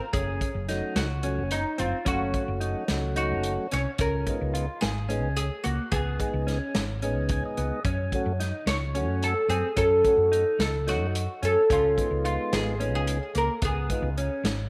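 A small room and moderate spring reverb frame this bright, driving progressive instrumental, a short cut from a longer piece in 7/8 with a straight feel. Up front, a plectrum-plucked oud with woody double strings carries the melody through tape echo, while a growly, hollow-body fretless bass holds the low end with punch and an ensemble chorus. A dark, fingered electric guitar plays clean, compressed arpeggios under a lush chorus. A mellow tonewheel organ enters at 0.7 seconds with round accompaniment, audible key click and a slow rotary speaker, and it adds a brief fill at 7.0 seconds. A swinging big-band kit of hi-hat, medium-tuned snare and punchy kick drives the band as the harmony alternates between Gbm and Db7.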